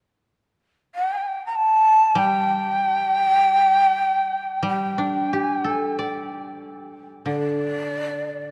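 Austere and still, this short slice of Japanese chamber music drifts in free rubato around 44 to 50 BPM in 4/4. A breathy, end-blown bamboo shakuhachi carries the melody up front from 1.0 seconds, its unsteady, tongued notes marked by chiff and vibrato. A dry, woody koto plucked with fingerpicks joins at 2.2 seconds as quieter accompaniment, and the piece moves into a new section at 7.2 seconds, all set in a dark production with a long, wet cathedral reverb.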